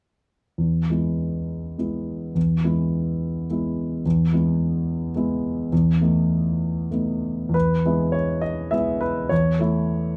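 A romantic classical character piece for solo piano, this passionate, hopeful fragment of a longer work sways in a rubato 6/8 as an intimate, natural, up-front concert grand with deep bass, short sustain and audible action noise plays from 0.6 to 10.2 seconds, shifting into a new section at 7.5 seconds, all set in a light reverb.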